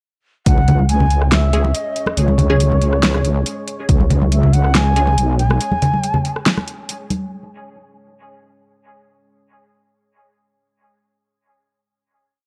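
Deep dubstep in C# minor at a half-time 140 BPM, dark and meditative, where an airy bamboo shakuhachi with gritty 12-bit sampler texture and dub echo sings motif-based call phrases from C#5 over a heavy, saturated wobble bass with changing wobble speed, a slow-blooming background pad with chorus and reverb, sparse phaser-touched dub chord stabs moved in parallel, bright echoing congas, a tape-warm half-time kit with fat snare and metallic hats, and a deep electronic kick at 0.5 and 3.9 seconds, all captured in a dry, gritty hardware-and-cassette sound.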